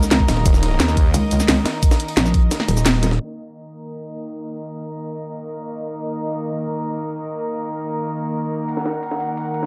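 Futuristic and mechanical, this dark technical drum and bass cut at 175 BPM in Eb minor opens with a knocking electronic kick, a cracking drum and bass kit with bright hats, a gritty, pitched-up breakbeat kit in the background, a metallic, chorused wobble bass and a brief growling saw bass snarl at 0.5 seconds, all over reedy, gut-string sustained chords from a studio string section. The sidechain pumping of those strings carries on alone after the kick drops out at 2.5 seconds and the other drums and basses fall away near 3.3 seconds, as a filter sweep moves across the strings until the breakbeat kit returns at 8.7 seconds.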